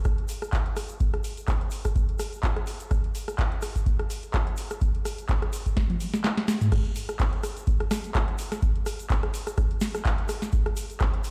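A deep, dry electronic kick drum sits up front, driving this raw, trippy house groove at 126 BPM in 4/4 with a light 16th-note swing. Beside it, a booming analog drum machine supplies a tonal snare, metallic hi-hats, handclaps, rim clicks, toms and crash cymbal, also dry and close. A grainy, bright egg shaker adds acoustic texture from the background, set in its own small room. Around 5.8 seconds a drum fill takes over, the kick falls away briefly, and at 6.7 seconds the track hits a drop that carries through to the end. The whole mix has a light digital reverb and the hard, echoing sound of a big system playing in a bare stone room, and it is cut from a longer piece.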